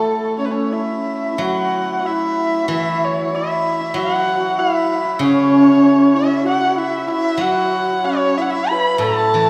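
A dark, close erhu opens together with a breathy low xiao and a hammered dulcimer, the three sharing a festive yet graceful Chinese chamber ensemble piece in a rubato 4/4 around 94 BPM in an A gong mode. The erhu carries the melody up front with light vibrato, portamento and an airy, soft-attacked bow, sounding intimate as a single player. Beneath it, the end-blown bamboo xiao adds a second line with a gentle, vibrato-touched tone, while the dulcimer's hammered strings shimmer and ring in the middle register. At 1.4 seconds a steel-string zither enters in its low range as accompaniment, its fingerpicked notes silvery and ringing. The group sits further back in a reverberant scoring stage, and the passage is cut from a longer piece, running to 9.5 seconds.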